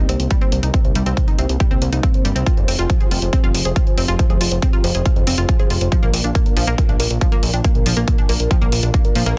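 A punchy, layered electronic kick sits up front in this short uplifting trance excerpt, driving a straight 4/4 pulse at 139 BPM with a driving, bittersweet mood. Beneath it, a fat, saturated analog bass built from detuned sawtooth and square waves holds the low end, while an electronic hi-hat enters at 0.1 seconds. Also from 0.1 seconds, a round, chorused analog pluck with a noise layer and digital delay spins arpeggios. In the background, a supersaw stab plays the melody through a low-pass filter and digital delay, and a lush unison pad sustains chords with chorus and a filter sweep across the whole passage. Bass, pluck, stab and pad all pump with sidechain against the kick, and the harmony moves from Cm7 to Fmadd9 to Bb inside a dense, heavily limited modern master with digital ambience.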